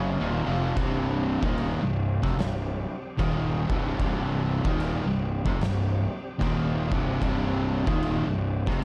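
Ominous and heavy, this stoner and doom metal excerpt crawls at 74 BPM with a swung feel in C minor, as two dark, picked fuzz guitars sit in the background beneath a biting, double-tracked overdriven guitar riff and a growly, up-front fuzz bass, while a very quiet tonewheel organ holds smooth sustained chords through a slow rotary speaker and an oversized, low-tuned drum kit with a fat snare, punchy kick and dark cymbals crashes in at 0.8 seconds, all set in a dark production with light reverb.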